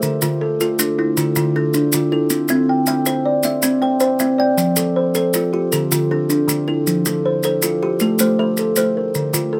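Rippling and hypnotic, this short excerpt from a longer piece draws on southern African traditional music, built on an mbira-style interlocking cycle at 105 BPM in a straight 12/8, in F major. Two kalimbas play arpeggios throughout, both ranging from D3 to G5 and sitting up front in a close, detailed sound with little reverb. One has a hollow-box, fingertip-plucked character that is mellow, soft, vintage and band-limited, while the other, a solid-board instrument plucked with the thumb, rings out warm and woody at a somewhat lower level. Maracas add a grainy, mellow, compressed and saturated shimmer beneath them, quieter still. The harmony moves from Dm to C, then F, back to Dm and F, arriving on Am near 8.0 seconds as the cycle keeps turning.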